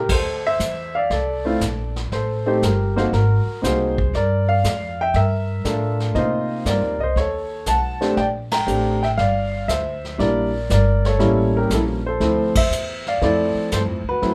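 A moderate club reverb gives this moody, swinging jazz piano trio fragment an intimate, roomy sound, moving at 119 BPM in 4/4 with a D minor center and a chromatic progression that winds through Gm9, Bbmaj13 and A7b9 before settling on Dm9. Up front, a warm grand piano with long sustain carries the melody, while a woody pizzicato upright bass holds the low end beneath it. A vintage brush kit sits mid-forward with a rolled-off top, punchy kick and medium-tuned snare, and the band hits accents together at 8.4 and 12.5 seconds.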